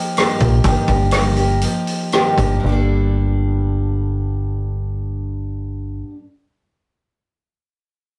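Folk rock with a heartland rock lean, this wistful, dusty excerpt cut from a longer piece opens with a bright picked steel-string acoustic guitar carrying audible finger squeak, joined almost at once by a vintage drum kit with punchy kick, hi-hat and rim click that stops at 2.5 seconds, and a dark, round picked electric bass sitting up front, the whole rough rehearsal-room take easing down in pace over its first 2.6 seconds before settling onto a minor chord through a moderate reverb.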